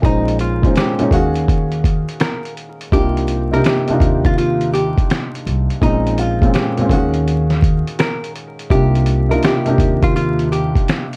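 Vinyl crackle and a light reverb frame this melancholic, hazy lo-fi hip hop fragment, cut from a longer piece and set in a swung 4/4. Up front sits a felt-muted upright piano, soft and intimate with its action noise audible and a cassette-tape character, carrying the accompaniment through minor eleventh chords that move from Bbm11 to Ebm11 and Cm11 and then around again. A sampler-style drum kit, compressed and muffled as if re-recorded in a small room, lays down a thumpy kick, a fat snare, hi-hat and finger snaps close to the listener. Beneath them a pizzicato upright bass on steel strings sounds woody and growly, dropping out at 10.7 seconds just before the end. The melody comes from a miked and amplified hollow-body archtop guitar, clean, picked and dark in tone.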